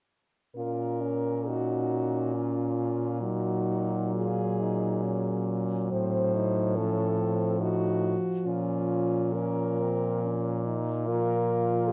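Four French horns enter together at 0.6 s in an elegiac, melancholic classical passage in a flexible, rubato three-beat pulse, the top horn singing a smooth-edged melody over a warm second line and a dark inner accompaniment. Beneath them, a clear bass horn with vibrato sits up front in the low register, carrying the harmony through its minor-key progression until the quartet stops at 11.9 s. A moderate recital hall reverb surrounds this short excerpt, cut from a longer piece.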